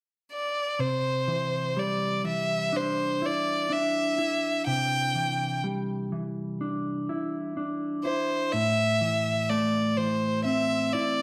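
A rich, bowed violin carries the melody from 0.3 seconds, one player with smooth, even vibrato sitting up front between C5 and G5 and touched by a slapback echo. At 0.8 seconds a mellow, dark electric guitar joins with clean, fingered arpeggios from A2 to E4, compressed and also up front, with its own slapback echo. This soaring, cinematic rock passage moves at a slow 62 BPM in straight 4/4, in C major, over a Cadd9 chord that shifts to Am at 8.5 seconds. A moderate large studio reverb, blended with a small room reverb, gives the pair a spacious setting. Cut from a longer piece, the recording ends with both parts still playing at 11.2 seconds.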